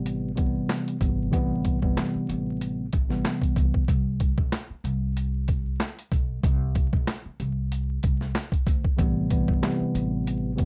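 A mellow, clean tine electric piano on an Am7 chord and a woody, pizzicato upright bass open this moody, reflective boom-bap hip-hop excerpt at 94 BPM in A minor, joined at 0.1 seconds by a gritty, pitched-down sampler-style kit of thumpy kick, medium-tuned snare, hi-hat and handclaps, with the piano dropping out at 3.8 seconds and returning at 9.0 seconds, all set in a dark, dry mix with vinyl crackle and a swung 16th-note feel.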